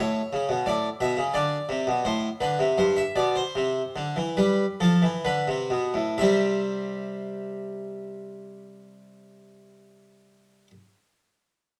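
The rhythm moves in a straight, even 4/4 pulse that gradually slows through the opening 6.2 seconds, giving this baroque-style two-part invention a stately yet lively character. A solo harpsichord carries the whole piece, a Flemish-style instrument with three sets of strings whose plucked tone sounds full, airy and brilliant, spanning from low G2 up to E5. It sits up front in the mix within a dark, warm production, surrounded by a moderate stone-room reverb. The harmony passes through A, D5, C over G and G7 before settling on C at 6.2 seconds, where a new section begins. This short passage is cut from a longer piece and breaks off at 10.7 seconds.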